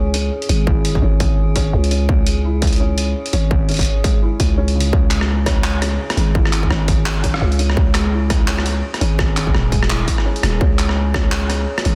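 A felt-muted upright piano plays soft, intimate arpeggios through a dub echo over a growling, buzzy 808-style bass sitting up front, while an eerie, metallic FM drone on G#4 warbles with chorus and its own reverb in the background of this tense, heavy half-time drum and bass piece at 169 BPM, built on a C# minor chord. A gritty, pitched-down boom bap sampler-style kit enters at 0.1 seconds with handclaps, hi-hat, rim click and a soft-clipped snare, re-recorded in a large room. A distorted, tape-toned electronic kick joins at 0.7 seconds and drops out at 11.2 seconds, the swung sixteenths sitting in a dense, heavily limited modern master.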